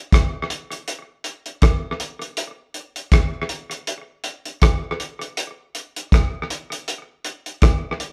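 Smooth and sweet, this short reggae clip moves at 80 BPM in 4/4 with a gentle 16th-note swing. The only part is a cloth-damped, thuddy acoustic drum kit of hi-hat, tight kick and rim click, heard from 0.1 to 8.1 seconds. It sits up front with a dark, rolled-off top and tape echo, set in a moderate studio room where the band plays live together.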